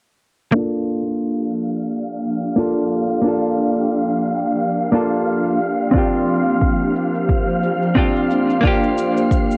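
A relaxed 4/4 groove with a noticeable swing on the sixteenth notes carries this short excerpt of sunset chillout music. A dark, clean hollow-body electric guitar sits up front from 0.5 seconds, its compressed, picked accompaniment shaped by a filter sweep, low-pass filtering and tape echo. An ethereal, detuned pad holds sustained chords alongside it, coloured by ensemble chorus, phaser and reverb, while a breathy, wind-like noise texture hovers high above and a cabasa sits faintly in the background. A deep electronic kick arrives up front at 5.9 seconds, just after the harmony moves from Gm7 to Bb69 at 5.6 seconds. The mix has the hazy, muffled character of a home cassette recording in a small booth, giving it a warm, easygoing glow.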